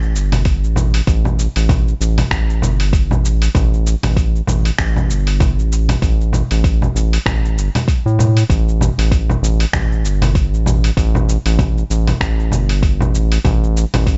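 Organic downtempo at 97 BPM in 4/4, with a 16th-note swing and an earthy mood, heard as a short section cut from a longer piece. A round, up-front analog bass with tube saturation and sidechain pumping holds the low end from the start, while a gritty, overdriven sampler-style kit of cabasa, congas, finger snaps and hi-hat sits in a small room. A deep, layered electronic kick joins at 0.5 seconds. The overall mix is dry, with its highs rolled off.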